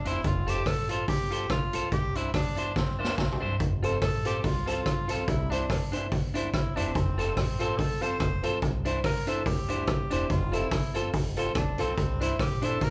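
A lightly swung ska groove in 4/4 bounces along in this upbeat clip from a longer piece, driven by an up-front street-band drum kit with a boomy kick and medium-tuned snare that plays a fill at 2.8 seconds, while a growly pizzicato upright bass sits in the background, a twangy, slightly broken-up electric guitar picks out its accompaniment, a boxy upright piano adds short stabs from 3.8 seconds, and a breathy, whispered tenor saxophone carries an intimate solo melody over alternating F and Cadd9 chords, all captured as a band playing live in one room with light reverb.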